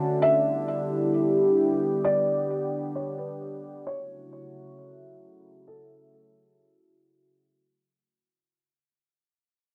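A rough home-demo mix in a moderate studio reverb gives this short hip hop fragment, cut from a longer piece, a floating, blissful atmosphere in free time. Up front sits a sweeping, resonant pad built from detuned sawtooth and wave-folded triangle tones, sustaining chords from 0.0 s through 7.5 s with a slow attack, long release, chorus, phaser and a low-pass filter. Its evolving sound carries the harmony from Em7 to F#m7 at 3.9 s. Above it, a felt-muted upright piano enters at 0.2 s with a soft, dark, intimate melody, its thick felt, short sustain and audible action noise softened further by a low-pass filter and delay. A filter sweep and a fade-out run across the whole passage, leaving the music suspended and dreamlike.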